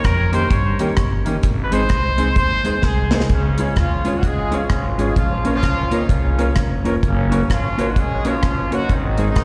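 Upbeat and joyful, this short ska cut at 129 BPM swings along in Db major, opening with a vintage-toned trumpet solo carrying tape and slapback echo before a distant, roomy horn section takes over the melody at 3.3 seconds with tight octave doubling. Underneath, a woody, thumpy upright bass and a dry reggae drum kit with a tight kick sit up front. A clean, fingered electric guitar with analog chorus and a dark upright piano playing stabs in the background fill out the groove, and a drum fill at 2.8 seconds leads into the horns. The whole thing sounds like a live gig heard through the venue's PA, with recital hall reverb around it.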